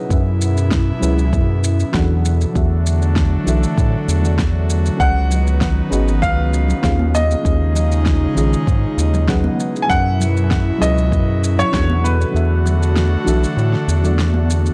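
Dry, gritty recording in a digital ambience gives this relaxed, wistful sunset chillout piece a close, slightly rough character, heard here as a short cut from a longer work in a straight 4/4 feel. A round, dark analog bass sits up front with a sustained, deep tone and a touch of tube saturation. Beneath it, a soft FM electric piano with a noise layer plays full-bodied, decaying chords through chorus and tape echo, while an airy, breathy pad holds detuned sustained chords with a slow attack and long release. Layered electronic drums carry the groove: a deep, tape-warm kick that stops at 11.9 seconds, and a shaker with a fat snare that continue to the end, both set in studio ambience. From 5.0 seconds a brilliant, worn baby grand piano takes the melody, intimate and present, with audible action noise, short sustain and an analog delay, and compressed, saturated congas join in the background soon after. 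The harmony drifts through suspended ninth chords, keeping the mood hazy and unresolved.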